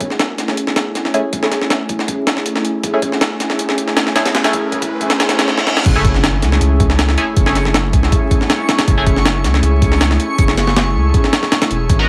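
Atmospheric, nostalgic drum and bass in a jungle vein at 159 BPM in F# minor, this excerpt opens with an airy, breathy pad carrying sustained chords through chorus and vintage 12-bit sampler grit and an up-front, gritty, pitched-up sampler-style drum kit with a thumpy kick, a medium-tuned snare and crash and hi-hat. At 1.1 seconds a band-passed, nasal chord stab joins in the background, treated with chorus, phaser and dub echo. Both synths sit under filter sweeps as the build-up moves from Amaj7 while a very quiet riser and reverse cymbal lead to a drum fill, before the drop at 5.9 seconds shifts to F#m9 and brings in a thick, saturated sub bass up front and a reversed, dreamy granular texture swelling in the background, all wrapped in light digital ambience and vinyl crackle.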